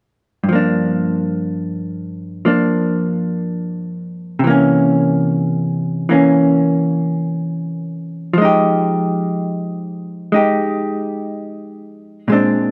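A dark, intimate sound bathed in moderate plate reverb frames this romantic jazz fragment, where a vintage hollow-body electric guitar, clean, picked and compressed, sits up front in a slow swing, voicing Gm7, C7b9 and Fm9 as accompaniment from 0.4 to 12.7 seconds.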